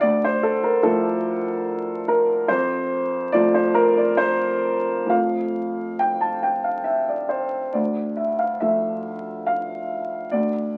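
Neoclassical minimalist piano in F major, this short cut from a longer piece moves in a rubato 3/4 at roughly 64-73 BPM, with an intimate, peaceful mood. A solo upright piano carries everything from 0.0 to 10.8 seconds, ranging from D2 up to A5. Its tone is woody and warm, with long sustain, and it sits up front in the sound. The harmony rests on Dmadd9, moves to F at 2.5 seconds, and returns to Dmadd9 at 7.7 seconds. A wet studio reverb surrounds the playing, while the sound of a very old 78 rpm record adds vinyl crackle and an aged patina.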